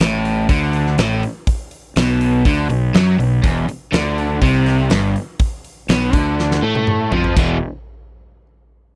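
A crunchy, double-tracked overdriven electric guitar riff drives this swaggering, raunchy blues rock and southern rock piece at 122 BPM in a straight 4/4, together with a fuzz-laden fingered electric bass and a huge arena drum kit from the very start. The picked guitar sits up front with a bright edge. The bass, also up front, rumbles dark and round through its overdrive. The acoustic kit has a hall character, with brilliant cymbals, a fat snare and a punchy kick alongside crash, hi-hat and toms. The harmony moves from B5 through Dsus2/E, Gsus4 and Bm7b5, and a drum fill from 6.4 to 7.4 seconds leads into a new section landing on E5. It is a dry, close 1970s-style studio recording with light reverb, cut from a longer piece.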